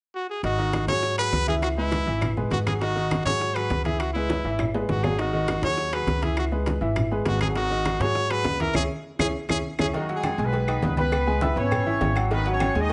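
A solo trumpet opens this driving, fiery salsa cut from a longer piece, up front with vibrato, scooped notes and a smooth top to its bright pop-style tone. Almost at once, a brilliant upright piano joins with a woody, slightly detuned sound, audible action noise and long sustain, while a dark, thumpy pizzicato upright bass on steel strings anchors the low end. The percussion sits behind them: compressed, saturated congas with a thin, low-tuned skin, ringing metal-shell timbales with agogo bells, woody claves, and very quiet, round bongos and cowbell close and dry. Drum fills break in around 4.3 seconds and again near the end of the opening stretch, which closes on a band accent over a minor chord. At 9.9 seconds the trumpet gives way to a tight, clear horn section with light vibrato, distant and roomy yet up front, trailed by tape echo, as the minor-seventh vamp continues. A moderate large-studio reverb surrounds the mix, and the highs are gently rolled off.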